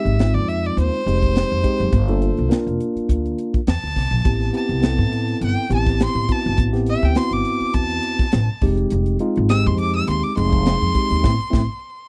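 Driving and intense, this electric jazz fusion passage moves at 103 BPM in 4/4 with a light sixteenth-note swing, and it is cut from a longer piece. A clear, nasal violin carries the melody as a bowed solo across the full 12.1 seconds, its airy bow and light vibrato paired with a boxy, intense tone. Beneath it, a mellow tine electric piano sits up front through its built-in speakers, comping over chords that move from Fm9 through Gm9 and Am9 before returning to Fm9. A woody, pizzicato upright bass with steel strings anchors the low end, while a crisp, polished drum kit drives the groove with a high-tuned snare, punchy kick and hi-hat in an airy studio room. The sound is dry and close in a 1970s studio style, and the band lands a shared accent on an Am chord at 11.2 seconds.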